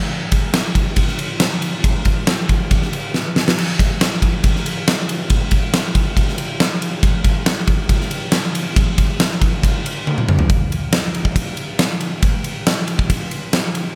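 A swaggering, driving rock passage cut from a longer piece, built entirely on a huge arena drum kit in straight 4/4. The acoustic kit sits up front in a big room, with a punchy kick, a fat snare and bright cymbals, while crash, ride and toms fill out the pattern. The drums come in at 0.3 seconds and carry the music alone until 13.9 seconds. Fills break the groove at 3.1 seconds and again at 10.1 seconds, the second one leading into a new section at 10.5 seconds. A light reverb adds air around the kit.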